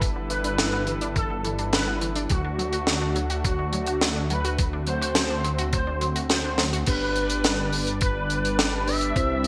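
Synthwave in G major at 105 BPM, this dreamy, romantic excerpt moves in a straight 4/4 through chords of G6 and D before returning to G. A smooth, expressive sawtooth lead carries the melody with vibrato and gliding portamento, dressed in ensemble chorus and delay, over a softly warbling analog pad whose slow-attack chords breathe with sidechain pumping. In the background, a lush, bright unison pluck spins arpeggios through digital delay until 6.8 seconds, while a dark, detuned saw bass rumbles and beats up front with saturated weight. An electronic, thumpy kick pairs with a tight funk kit, its high-tuned snare, hi-hat and crash cymbal sitting forward under gated reverb, and a drum fill at 6.6 seconds leads into the next section. From 6.9 seconds a mellow, round FM electric piano adds chorused stabs, and the whole piece has a bright 1980s-style digital sheen with moderate plate reverb and small-room ambience.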